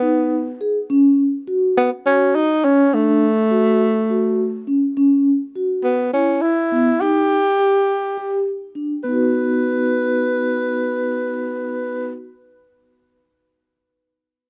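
A breathy tenor saxophone carries the melody up front, with light vibrato and a jazz-style phrasing, in this bright, intricate progressive instrumental in 7/8. Beside it, a vibraphone struck with soft mallets plays mellow, ringing arpeggios colored by a medium motor vibrato and a slapback echo, and the music moves into a new section at 9.0 seconds. The dry, close sound of a small room evokes a 1970s studio, and the fragment is cut from a longer piece.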